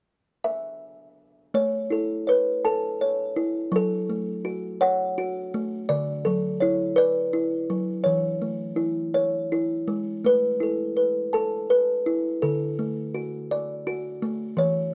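A dry, close recording with a 1970s studio character and light reverb frames this gentle, innocent children's music fragment in A major, where a woody, hollow-box kalimba with a soft fingertip pluck enters at 0.4 seconds and carries the melody up front at 55 BPM in a straight 6/8, moving through chords such as A, F#m, Dadd9 and E6 before resting on D.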